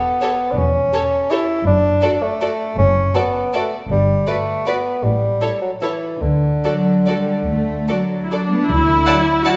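A solo bassoon sits up front with a lightly vibrato-tinged, soft-edged tone, carrying the accompaniment until 8.3 s in this festive, sweeping orchestral ballroom waltz in D major, cut from a longer piece. Above it, a close, intimate studio violin section sings the bowed melody sul tasto, while a symphonic violin section floats a pure second line in the background. A rich viola section fills the inner accompaniment up front, and cello and double bass sections, the basses sounding distant, anchor the low end with gentle attacks. The 3/4 pulse moves with rubato between 136 and 177 BPM as the harmony travels from A7 through D/F# and Gmaj7 back to D. Near the close, very quiet timpani with soft mallets strike a round D3 at 8.7 s, and a mellow French horn section adds sustained chords from 9.1 s, the ensemble heard from further back in a recital hall reverb with a dulled top end.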